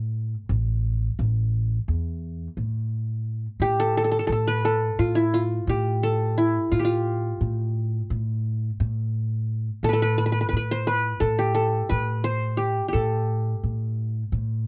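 A dry, close 1970s-style studio sound with light reverb frames this stately, festive Turkish makam ensemble piece in 9/8, cut from a longer piece, where an up-front qanun, played with fingerpicks, carries the melody in a mellow yet bright-edged voice from its triple strings while an up-front upright bass, plucked pizzicato on steel strings, supplies a woody bass line, the two playing together from the start until the qanun stops at 14.3 seconds and the bass closes alone at 14.7 seconds.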